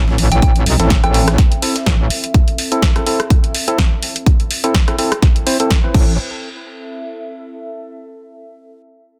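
Bass house with a swaggering, aggressive mood and a swung 4/4 groove, cut from a longer piece. A metallic, saturated wobble bass sits up front with chorus, overdrive and sidechain pumping, playing until 2.1 seconds and returning briefly near the end of the first section. A punchy electronic kick, re-recorded in a large room, drives the track from 0.4 to 6.0 seconds alongside a house kit with a punchy snare, bright hats, rim click and crash, while a very quiet, gritty, pitched-up breakbeat kit adds sampler-style hi-hat and snare only at the start. A hollow, organ-like stab with ring modulation, chorus, delay and sidechain pumping runs under a filter sweep, and a soft, pure synth bell with phaser and delay rings out in the background for under a second. A dark, warbling, lo-fi pad with built-in reverb fades out across the first section and then carries on alone to the close at 8.1 seconds, all within a dense, heavily limited modern master with light reverb.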